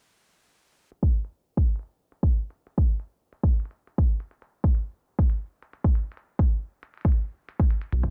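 Intricate and eerie, this IDM fragment cut from a longer piece begins with clicky electronic hi-hats at 0.9 s and a deep, up-front electronic kick drum, both re-recorded in a small room, under a filter sweep that runs throughout, before a dark, rumbling detuned sawtooth bass on B1 surfaces at 7.9 s inside a dry, dense, heavily limited and low-pass-filtered master.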